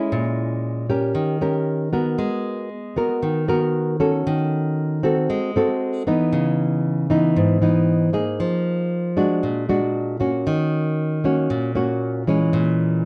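This bossa nova excerpt has a smooth, wistful mood, carried entirely by a solo nylon-string guitar that sits up front in the mix. The thumb-plucked classical guitar moves through rich, jazz-tinged chords, with audible finger squeaks and a touch of slapback echo. The close, dry 1970s-style studio sound carries only light reverb, keeping the guitar intimate and present.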